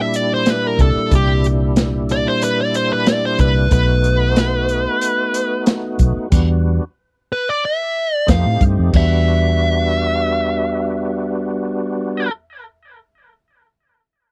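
Straight-eighth soul blues in E minor at 92 BPM, brooding and mournful, this short cut from a longer piece sets a dark, smooth overdriven lead guitar melody over a percussive tonewheel organ with slow rotary speaker, chorus vibrato and light grit. A crunchy breakbeat drum kit with dim cymbals, a tight kick and a saturated, rolled-off top plays until 9.1 seconds, while a vintage foam-muted fingered bass, round and punchy, enters at 0.8 seconds and carries on to 13.0 seconds. The chords move through C7, B7, Em9 and F7 before settling back on Em9, all captured in a dry, close 1970s-style studio sound.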